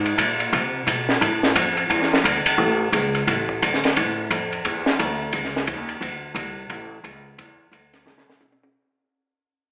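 A woody, growly pizzicato upright bass opens this relaxed, playful swing-and-bop fragment at 175 BPM, with a compact cocktail drum kit joining almost at once, its dark cymbals, high-tuned snare and punchy kick sitting up front beside the bass. Heard as a live gig through the venue's PA, the sound carries club reverb and a telephone colour. From 3.3 seconds the music fades out, and a drum fill arrives at 8.1 seconds as the fragment is cut short.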